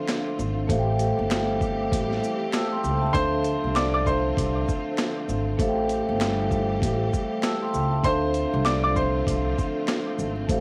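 Boom-bap hip-hop at 98 BPM in D minor, dark and reflective and cut from a longer piece, where a brilliant upright piano carries the melody through tape echo over mellow soft-mallet vibraphone with slow motor vibrato, lush bowed strings sustain Dm7 and Am7 chords, a gritty, pitched-down sampler kit hits with a thumpy kick and high-tuned snare, a woody pizzicato upright bass on gut strings enters at 0.4 seconds with tube saturation, and a very quiet finger snap ticks along, the whole home cassette recording carrying light reverb and vinyl crackle.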